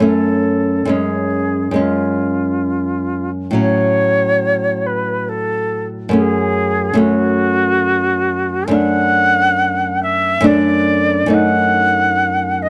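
A dry, close studio sound in a 1970s style frames this short section, cut from a longer piece, with studio reverb. It is a tender, romantic duo in F# minor for flute and classical guitar, moving at 70 BPM in a flexible, rubato 3/4. The concert flute carries the melody throughout the 12.7 seconds, its airy tone shaped by vibrato and tongued notes and played in an expressive, up-front manner. Beneath it, the nylon-string guitar offers a small, fingerpicked acoustic accompaniment with a warm glow, also placed up front. The harmony drifts from F#m through C#/F#, F#m/A and D/F# before coming to rest on F#m6 at 11.3 seconds.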